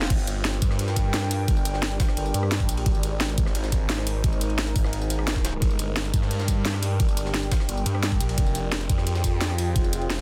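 A straight 4/4 drive sets the mechanical, dark mood of this technical drum and bass drop, where an up-front overdriven knocking kick and a layered kit of cracking snare, bright hats, crash, rim click and tambourine sit over a gritty, pitched-up jungle sampler kit in the background, while a swirling, thick, phased saw bass pumps against the kick beneath a deep, moody ambient pad and a warbling lo-fi tape-like pad, all moving through Gm, Ab and Fmadd9 in a dense, heavily limited master.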